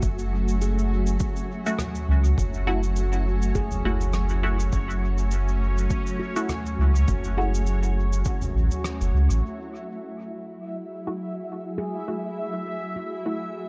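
A round, sine-toned sub bass sits up front in this deep, meditative stretch of ambient dub in F# minor, moving at 102 BPM in 4/4 with a light swing on the sixteenths over a single F#m7 chord. Around it, an overdriven electronic kick hits with a punchy, layered weight, while a soft-mallet acoustic kit of cabasa, rim click and toms carries a big-room feel through low-pass filtering and dub echo. A blurred, evolving granular cloud pad holds sustained chords alongside a dark, ringing handpan playing fingertip arpeggios in the background, muffled by a low-pass filter and trailed by dub echo. A resonant, bubbling texture with random filter steps and chorus drifts through the middle register, and a muted, detuned chord stab with phaser, cassette-tape grit and dub echo enters at 1.7 seconds with short, plucky hits. After a band accent at 8.8 seconds, the kick, kit and sub bass have all stopped by 9.4 seconds, leaving the pad, handpan, texture and a filter sweep on the returning stab to float in the dark, fairly dry mix of this section cut from a longer piece.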